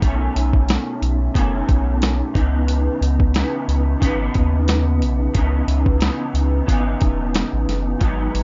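Hazy and lonely, this short excerpt cut from a longer indie and bedroom pop piece sits at 90 BPM in C# minor, with a gentle 16th-note swing and a dark production that rolls off everything above 7.4 kHz under a light reverb. An up-front electric guitar through a small old amp, slightly broken-up and fingered, carries the accompaniment with an ensemble chorus and warbly pitch drift, moving from B9 to C#m9 at 2.4 seconds. Beneath it, a round analog bass with a deep, sine-like tone and filter sweep plays alongside a gritty, compressed sampler-style drum kit whose thumpy kick, medium-tuned snare and hi-hat sit up front throughout.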